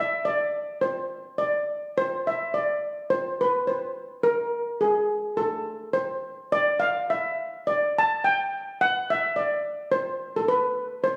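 Alpine folk with a festive, bouncy mood, this excerpt moves at 106 BPM in 2/4 with a light swing on the eighth notes, set in C major and tuned slightly sharp to A4 = 443 Hz. A lone steel pan carries the lead from 0.0 to 11.2 seconds, its metallic, shimmering tone struck with medium rubber sticks and heard close, dry and full up front, ranging from Ab4 to A5. A recital hall reverb with a 1.4-second tail surrounds the playing, and the sound has the casual character of a phone recording made in the room.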